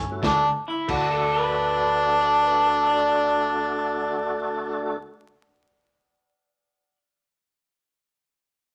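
An electric blues shuffle in D major at 91 BPM, swung in 4/4 with a gritty, rollicking mood, this short cut from a longer piece opens on a D chord. A clear harmonica carries the melody up front, its overdriven tone showing light vibrato and scooped notes in a jazz-style solo. Beneath it, a full tonewheel organ plays accompaniment through a slow rotary speaker with chorus vibrato and light overdrive, while a woody pizzicato upright bass holds the low end. A crunchy breakbeat kit of crash, kick and snare, saturated with dark cymbals and a rolled-off top, sounds only briefly near the start. At 0.7 seconds a twangy, slightly broken-up electric guitar through a small old amp enters with a picked second line, and it plays alone after the other parts stop at 5.0 seconds. A wet club reverb and vinyl crackle surround the whole sound.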